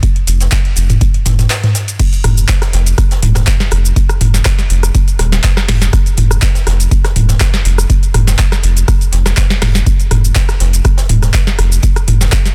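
A saturated sub bass sits up front in this driving, trippy acid house excerpt, its deep, thick triangle tone pumping against the beat with a fast attack and sustained notes between Eb1 and F1 from 0.3 seconds. At 122 BPM in 4/4 with a light swing on the 16ths, an electronic kick drum thumps deep and tape-warm underneath, joined by a booming analog drum machine carrying crisp snare, metallic hi-hats, handclaps, rim clicks, shaker, toms and crash cymbal, with a short room on the snare, claps and hats. Far in the background, a jazz brush kit adds an acoustic hi-hat and a medium-tuned snare in a small room, its hats pumping and filtered and its snare lightly clipped. A brief break from 1.5 to 2.0 seconds leads into the drop, which runs through to the end of the cut. The dense, heavily limited modern master is wrapped in digital ambience.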